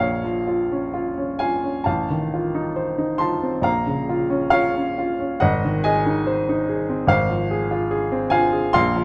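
A classical romantic nocturne for solo piano in Bb minor, this mournful, wistful excerpt unfolds in a slow, rubato 4/4 at around 62-75 BPM, with a warm, natural baby grand placed up front and spanning Ab1 to C6 as it moves through Bbm, F7/A, Ab and Fm/Ab, set in a dark production with moderate recital hall reverb.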